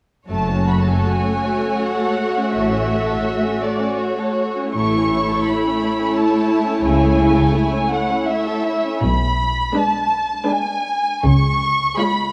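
A string orchestra enters together at 0.3 s in a melancholic, yearning slow romantic movement with a flexible, rubato triple-time feel, the first violins carrying the melody with a dark, woody, soft-edged tone and vibrato while the second violins add an expressive second line. Lush violas sit up front with smooth, even accompaniment, and close cellos and focused double basses supply the bass until they stop at 11.8 s, the upper strings continuing to 12.3 s. Scoring-stage reverb gives this fragment of a longer piece a spacious, dusky sheen.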